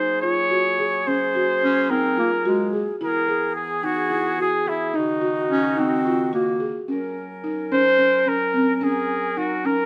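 Recorded close and in fine detail with light reverb, this excerpt of contemporary chamber music moves in an urgent, hypnotic 7/8 at 217 BPM counted in eighths, with a straight feel. Up front, the flugelhorn carries the melody with a punchy, vintage, pop-style tone, colored by vibrato and scooped notes. A marimba played with soft mallets spins arpeggios throughout, its hardwood bars sounding woody, buzzing and round. Beneath it, a dark, distant woodwind section holds sustained chords in a roomy, classical-style blend touched with light vibrato. A clarinet adds a jazz-style second line from 1.6 to 6.8 seconds, smooth on top and shaped with its own vibrato and scooped notes. The harmony passes from Gbadd9 through E and Ebm7, arriving on Gb as a new section opens at 6.9 seconds.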